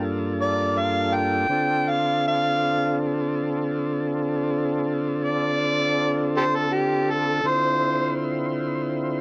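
A dry, close 1970s-style studio sound with light reverb frames this brooding, soulful D minor blues at 81 BPM, where an amplified, gritty harmonica solo with tongue slaps, scooped notes and light vibrato carries a jazz-style melody from 0.4 seconds over a thick, lightly overdriven tonewheel organ turning on a slow rotary speaker through Gm7 and Dm7.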